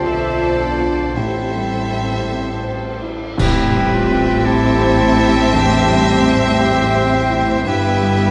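A moderate scoring-stage reverb surrounds this orchestral film-score passage, its top end gently rounded off, in a short cut from a longer piece. In A minor at a slow, rubato 56 BPM, the music feels longing and moving, drifting from Dm7 to a long stretch of Am7 before settling on G6 at 7.7 seconds. A lush, warm violin section carries the melody with expressive vibrato, while a close-miked oboe, a pure, hollow flute with lifted highs and a background clarinet weave second lines around it, joined by a clear, even second violin section. Dark violas and an intimate grand piano, whose action noise and long sustain can be heard, fill in the accompaniment, as a mellow French horn section holds sustained chords. Focused cellos and a rich, bowed double bass section anchor the low end. At 3.4 seconds the ensemble lands an accent, and clash cymbals with dark tone and a concert bass drum sound in a live room until 5.5 seconds.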